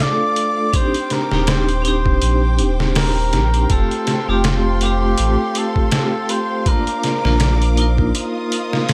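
A cup-muted trumpet carries the melody in this brooding, hypnotic trip hop excerpt, its veiled, soft jazz tone set at a distance with vibrato and a trail of tape echo. Beneath it, a vibraphone struck with hard mallets gives bright, metallic accompaniment through a slow motor tremolo. A symphonic violin section holds lush, bowed chords coloured by the grit of a vintage 12-bit sampler. The sampler-style drum kit sits up front at 81 BPM in 4/4 with a lightly swung 16th feel, its pitched-down, compressed sound pairing a thumpy kick with a medium-tuned snare and hi-hat, re-recorded in a small room. A deep, round sine sub bass enters at 1.3 seconds, and an airy, breathy wind-like noise texture drifts in very quietly from 2.5 seconds. The harmony moves from D minor through Fadd9 and Bb before a brief break at 8.1 seconds lands on Ebsus2, under a light reverb.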